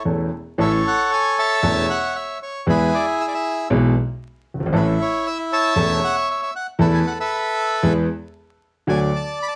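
A reedy, dark bandoneon opens the melody at 0.0 seconds, close-miked and up front with a touch of plate reverb, joined a moment later by a smooth, vintage-toned concert grand piano with deep bass accompaniment in this playful, elegant tango excerpt in A major at a rubato 116 BPM, moving through A, E, Esus4 and a final D chord in a snug studio room with vinyl crackle.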